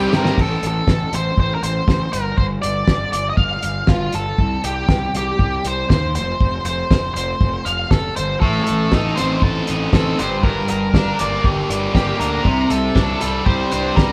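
A cloth-damped drum kit with a fat snare, tight kick and dark cymbals sits up front in this cool, moody indie rock excerpt in G minor at 119 BPM, opening on a short fill while an octave-fuzz lead guitar carries the melody over a round, fuzzed picked bass. A biting, double-tracked overdriven guitar plays its riff only briefly at the start, then returns at 8.4 seconds as the chords move from Adim through Gm to Csus2. The band plays live in one large studio room, with a moderate reverb giving the dark, distorted tones some air.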